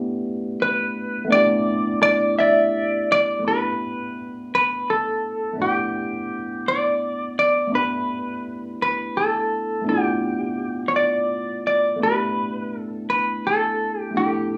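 Intimate and warm, this slow R&B fragment moves at 56 BPM in a straight 6/8, opening on a worn, slightly out-of-tune tine electric piano that plays the accompaniment through a combo amp with light overdrive and a phaser. A clean, fingered semi-hollow guitar carries the melody from 0.6 seconds, its compressed hollow-body tone shimmering with tremolo, and both parts sit up front in a live studio room with a wet reverb. The harmony rests on A9sus4, moves to G69 at 7.7 seconds, and returns to A9sus4 at 12.0 seconds.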